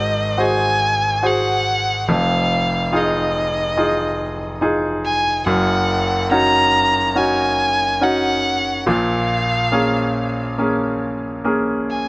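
The recording places both players up front with a light reverb around them, and it is cut from a longer piece. This pop instrumental moves at a steady 71 BPM in a straight 4/4, carrying an emotional, hopeful mood through its 12.1 seconds. A bright, polished concert grand piano plays accompaniment throughout, with brilliant highs, a deep bass reaching down to F1, and a short sustain that keeps its notes crisp. A single bowed violin carries the melody from start to finish in a focused, clear voice with vibrato and a smooth top, staying between Eb5 and Bb5. The harmony passes from Ab7 to Fm7 at 2.1 seconds, then Ebm7/Gb and finally Bbm7 at 8.9 seconds, giving the passage a yearning lift.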